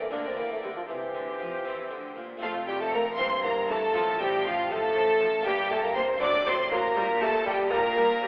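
A mellow, up-front solo bassoon carries the melody with an intense, clear violin section above it in this brilliant, lively excerpt from a baroque-style concerto movement in 6/8, while a soft-edged, intimate second violin section adds a second line and rich viola and cello sections, a clear double bass section and an airy Italian-style harpsichord sit in the background, the whole heard from further back in a wet recital hall with a thin, telephone-like sound.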